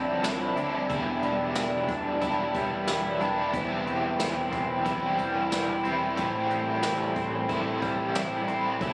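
A straight 4/4 pulse comes from a brushed jazz kit that enters at 0.2 s, with a boomy kick, tambourine and a rolled-off top, carrying this haunting, melancholic dream pop fragment cut from a longer piece. Up front, a double-tracked overdriven guitar plays accompaniment through tremolo and ensemble chorus, while a twangy clean guitar plays arpeggios through analog chorus and digital delay, over a hollow, flute-like pad holding sustained chords and a dark, foam-muted picked bass sitting low in the mix. The chords drift from Dm9 through Em7 and Cmaj7/E to Am7, the whole mix set in a lush hall reverb with a phone-in-the-room character and compression.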